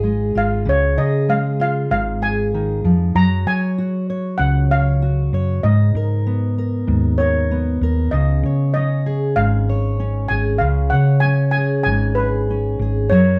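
A straight 4/4 pulse at 96 BPM carries this melancholic, intimate acoustic folk excerpt, built from a small band whose parts play together throughout its 13.4 seconds. Up front, a shimmering, airy steel pan struck with medium rubber sticks carries the metallic lead melody. Beneath it, a full-bodied, fingerpicked dreadnought acoustic guitar moves through C#, F#sus2, G#madd9 and back to C#, while a round, amped hollow-body short-scale bass anchors the low end in a dark production with moderate studio reverb.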